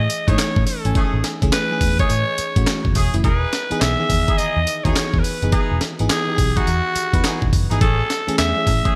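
A raspy, up-front alto saxophone with delay carries the melody over glassy, bell-like FM electric piano with chorus and a round, foam-muted picked electric bass from the start, as an overdriven, thumpy breakbeat sampler-style kit of kick, snare, hi-hat, handclaps and tambourine with gated reverb joins, followed shortly by a distant, jazz-style horn section adding stabs in this upbeat, bouncy new jack swing excerpt at 105 BPM in E major, swung on the 16ths, moving between Amaj7 and Emaj7 in a bright 1980s-style digital production with light reverb.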